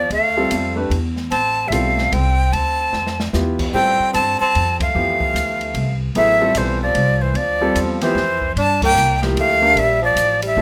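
Modal jazz in a lilting 3/4 at 149 BPM, swung and centred in D dorian, this searching, spiritual fragment is cut from a longer piece. A breathy, bright flute carries the melody up front, its crisp, chiffy attack and vibrato giving each phrase a reedy edge. Beneath it a tenor saxophone traces a second line in a soft subtone, with scooped notes and a gentle vibrato. The upright bass is plucked, woody and dark, sitting up front, while a baby grand piano adds accompaniment with natural, short-sustained voicings. An airy acoustic kit with dark cymbals, a medium-tuned snare and a boomy kick plays a drum fill at 2.9 seconds, and the band hits accents at 4.7 and 8.8 seconds. The harmony rests on Dm9 before moving to Gm9 at 8.6 seconds, all framed by a moderate studio reverb.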